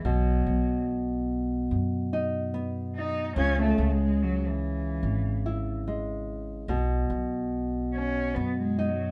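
Set in a straight, unhurried 4/4, this short folk piece, cut from a longer work, has a pastoral, warm mood. A dark, woody cello, bowed by one player with vibrato, carries a solo line from start to finish at 9.1 seconds. Beneath it, a full-bodied nylon-string guitar is fingerpicked with a deep classical tone, moving from B to C#m and back to B. An upright bass, plucked pizzicato on steel strings, adds a growly low end. Guitar and bass sit up front, and a light reverb gives the trio a gentle sense of space.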